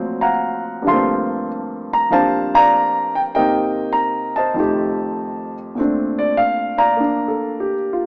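Solo jazz piano in B-flat major, this brief 8.1-second excerpt moves at a relaxed 98 BPM in 4/4, with a swung eighth-note feel and a loose rubato. A lone grand piano carries everything, spanning from D2 up to C6 with an intimate, natural tone and audible action noise, sitting up front in the mix. Its notes have a short sustain, set within a moderate plate reverb that lingers about 3.1 seconds. The harmony travels through sophisticated colors, opening on D7alt and passing through Gm11, Cm7 and F9 before settling on Bbmaj9 at 5.8 seconds. The rough home-demo mix has a small-speaker quality, and the instrument is tuned slightly high to A4 = 441 Hz.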